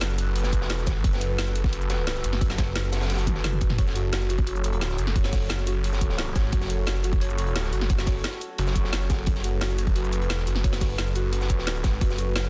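Dark technical drum and bass at 175 BPM in F# minor, aggressive and tense, cut from a longer piece, where a snarling, growling distorted saw bass sits up front with a tight layered electronic kick that enters at 0.5 seconds, a drum and bass kit with woody snare, bright hats, shaker and toms, and a gritty, saturated breakbeat kit with a high-tuned snare tucked into the background, all over a moody, phased analog pad holding an F#m chord, joined at 3.8 seconds by a soft, round pluck playing arpeggios through tape echo after a drum fill, in a dry, dense, heavily limited mix.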